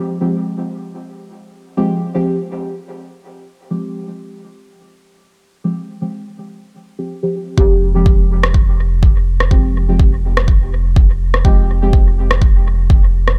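A soft, dark chord stab opens this hypnotic, meditative dub techno excerpt on its own, its wave-folded tone colored by chorus, phaser, dub echo and sidechain pumping over a lightly swung 16th-note feel. At 7.6 seconds a deep, up-front kick drum arrives together with a round, soft sub bass that pumps in time, and at 8.4 seconds a layered electronic rim click joins, trailing dub echo. The mix stays dry and close, with the kick and bass pushed forward beneath the mellow stabs.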